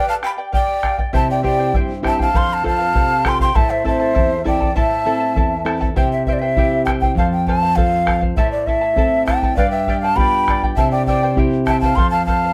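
Andean folk at 100 BPM in 2/4, earthy and wistful, where a breathy wooden large quena carries the melody with vibrato and a crisp, chiffy attack over a soft-attacked cane quena second line that drops out at 5.6 seconds and returns at 9.6 seconds, joined by a bright, shimmering fingerpicked charango, an up-front fingerpicked flamenco guitar entering at 1.1 seconds, and a deep, dark bombo, set in a moderate studio reverb.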